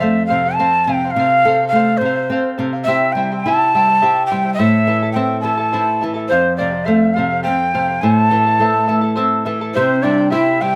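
An airy cane quena carries the melody from the opening in this festive yet wistful Andean folk excerpt in a straight 6/8, its crisp, chiffy attack dressed in plate reverb. Beneath it, a shimmering double-strung charango and an up-front, fingerpicked flamenco guitar accompany through a cycle of F, C and A minor chords. At 9.8 seconds a mellow bamboo pan flute enters with an expressive vibrato as a second line, all set in a small, reverberant room.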